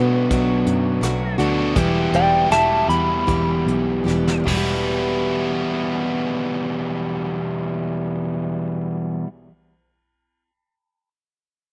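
Wistful and reflective, this short folk rock and heartland rock fragment in E minor moves at a slow 72-84 BPM in straight 4/4, easing down in tempo as an electric slide guitar with a slightly broken-up, compressed edge carries a solo melody until about 4.4 s, moving from Bm7 to Em. Beneath it, a picked plugged-in steel-string acoustic guitar with audible finger squeak and an up-front, biting, double-tracked overdriven guitar riff both carry slapback echo, while a fingered electric bass adds a dark, round, foam-muted low end. A soft brush drum kit with a fat snare and punchy kick plays from 0.3 s and closes with a fill before stopping at 4.7 s, all in a dry outdoor sound with little reverb.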